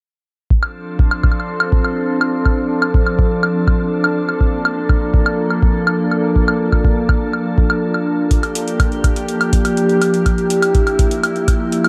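A deep, tape-tinged electronic kick sits up front at 123 BPM in a straight 4/4, joined at 0.6 s by metallic electronic hi-hat and woodblock trailed by analog delay, in a melancholic, glitchy IDM fragment in D minor cut from a longer piece. Above them a glassy, ethereal FM pad with slow attack and long release holds mellow sustained chords from Dm7 through Bbmaj7 to Gm7, thickened by ensemble chorus and its own reverb. The whole mix is dreamy and soaked in a huge ambient reverb with an 8.9-second tail.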